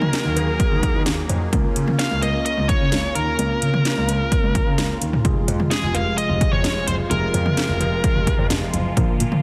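Synth-pop with a melancholic yet driving character, this short fragment of a longer piece moves in a straight 4/4. An up-front house drum kit leads the mix, its punchy kick, cracking snare, metallic hats, cowbell and toms layered, overdriven and re-recorded in a large room. A dark grand piano carries the bass from 0.2 seconds, intimate and vintage with audible action noise. A mellow tine electric piano plays clean accompaniment in the background through its built-in speakers, while a swirling, detuned sawtooth pad holds bright sustained chords with a soft attack, long release, phaser and chorus. A smooth overdriven lead guitar carries the picked melody with tape echo until 8.5 seconds, and a barely audible downlifter sounds during the opening 1.5 seconds. The mix sits in light digital ambience under a dense, heavily limited modern master.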